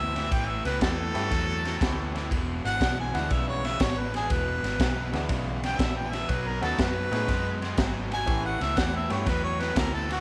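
A swung shuffle at 121 BPM in 4/4 drives this soulful, gritty electric blues in E mixolydian, moving from A7 through E7 and B7 back to A7. A harmonica with vibrato and a soft attack carries a jazz-style solo throughout, over an overdriven, picked stack guitar riff, a dark, round, foam-muted bass and a garage drum kit of punchy kick, ride and high-tuned snare with a saturated, rolled-off tone. A woody, brilliant upright piano sits in the background from 1.1 s to 9.3 s, and the recording carries light reverb and small room ambience.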